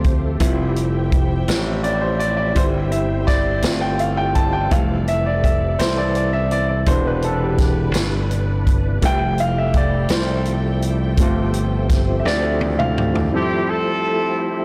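Slow gospel in a straight 6/8, uplifting and jubilant, cut from a longer piece. A baby grand piano carries the first 13.3 seconds as a solo, its intimate tone up front with audible action noise, over sustained chords from a reedy tonewheel organ turning through a slow rotary speaker with chorus vibrato and key click, and a lush bowed string section in the background. A glassy slap bass with tube saturation and a swinging big-band drum kit, its punchy kick and snare with soft clipping up front in a studio room, drive the groove through 13.3 seconds, the drums closing with a fill from 12.3 seconds. Rich Fmaj13, G9sus4 and Cmaj9/E voicings give the progression an uplifting colour. At 13.4 seconds a tight, vintage-toned horn section takes the melody into a new section alongside piano and organ. The sound is blown-out and overdriven, set in a small room with light reverb.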